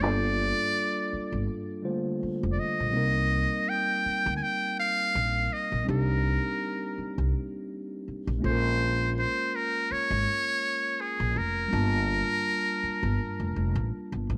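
R&B and neo-soul in C minor at a lightly swung 82 BPM, this late-night, soulful fragment of a longer piece sets a buzzy, thin metal-muted trumpet up front, playing a jazz-style solo melody with light vibrato and a soft attack until 13.9 seconds, over a mellow, clean tine electric piano and a woody, bright pizzicato upright bass, all in light reverb as the harmony moves through Gm9, Cm9 and Bbm9.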